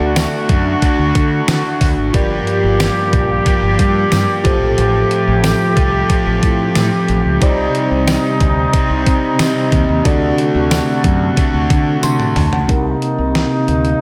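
This 1980s-style pop excerpt feels dramatic and urgent, its dreamy mix soaked in a lush hall reverb. Up front, a dark brass ensemble holds sustained chords with light vibrato and a distant, roomy, classical-style character, while a mellow tine electric piano adds clean accompaniment, both touched by shimmer reverb. A bright, overdriven stack guitar plays picked accompaniment with subtle chorus until 12.7 seconds, and a round fretless bass with lush chorus anchors the low end. The 12-bit drum machine sits up front with a thumpy kick and fat snare, and from 0.2 seconds a jingly tambourine is tucked in the background. A drum fill at 12.0 seconds leads into a brief closing passage on a Cm7 chord.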